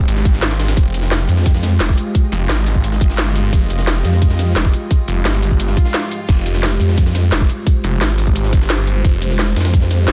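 This dark technical drum and bass excerpt runs at 174 BPM in a straight 4/4, driven by a tight, up-front electronic kick that enters at 0.3 seconds and is layered with a produced kit of cracking snare, metallic hats, shaker and crash cymbal, re-recorded in a small room. Beneath them sits a very quiet, gritty breakbeat sampler-style kit with a high-tuned snare and ride cymbal. A snarling distorted sawtooth bass growls between F1 and F2, aggressive and up front with a moving notch and sidechain pumping. Over it, a deep, moody ambient pad holds a sustained Fmadd9 chord in F minor, full-bodied with a sub octave, chorus, built-in reverb, vintage 12-bit sampler grit and sidechain pumping. A faint electronic swell sounds in the background around 5.7 seconds, adding to the mechanical, tense mood. The mix is dry, dense and heavily limited in a modern style.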